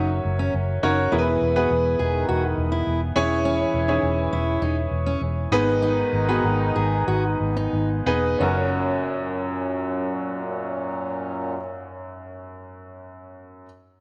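This hopeful, uplifting pop passage, cut from a longer piece, opens with a baby grand piano, a fingerpicked jumbo steel-string acoustic guitar, a muted fingered electric bass and a mellow French horn section all sounding together over chords moving from F# through E and C#m/E to G#m. The open, long-sustaining piano and the round, punchy bass sit up front, while the dark, full-bodied guitar riff and the vintage, classical-style horns with tape echo fill in beneath, and the pace slows between 3.4 and 8.4 seconds. The guitar drops out at 10.4 seconds, and the piano carries on alone briefly after the horns and bass stop, all of it set in a wet echo chamber reverb.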